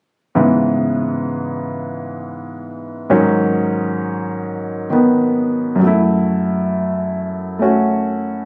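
Solo jazz in a moody, smoky vein, this brief cut from a longer piece features a clear concert grand piano playing up front with deep bass and a smooth, vintage character, swinging loosely in 4/4 with rubato over minor-seventh and suspended chords while a club-like reverb from a phone recording in the room frames its sound.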